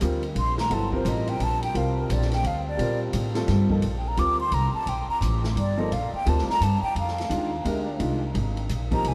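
Set in a vast, echoing space, this excerpt of spiritual, cool modal jazz swings in three, with a breathy, hollow concert flute soloing from 0.4 seconds over a woody upright piano, a thumpy, up-front pizzicato upright bass and a natural drum kit with dark cymbals and a boomy kick.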